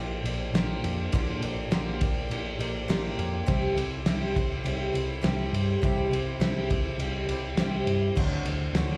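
Warm and hopeful, this short folk rock and heartland rock excerpt at 102 BPM in a straight 4/4 sets a bright, shimmering picked twelve-string acoustic guitar with slapback echo over a round, hollow-body picked electric bass and a cloth-damped, thuddy drum kit with a fat snare, tight kick and dark, muffled cymbals entering at 0.3 seconds, all heard as a live club gig through the PA as the chords move from Bb6 to C and then D7.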